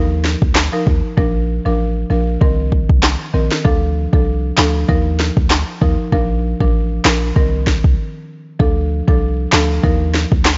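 Dancehall with a sultry, bouncy swing, cut from a longer piece, where a dark, woody buzzing marimba played with medium mallets carries chords cycling from Ebsus2 through Bb and Cm7 to Dm. Underneath sits a boomy 808-style bass with a sine core, a noise layer and a fast attack, while an up-front electronic drum kit of handclaps, a deep kick and a sharp snare enters at 0.2 seconds, and the groove pauses for a short break from 8.0 to 8.6 seconds. The whole recording has a dry, gritty hardware sound with transformer saturation and a dulled top end.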